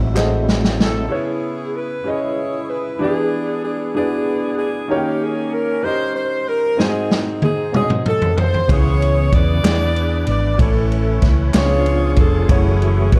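A clear, close-miked saxophone section carries the soulful, fervent melody with vibrato and slapback echo from 0.8 s over an intimate grand piano with audible action noise, a reedy tonewheel organ on fast rotary speaker, a round, punchy hollow-body bass, a boomy, roomy big-band drum kit with fills, and crisp group handclaps in this slow 6/8 gospel cut in C# minor at 63 BPM, moving through chords like C#m7, E7 and Amaj7 under a dark production with light reverb.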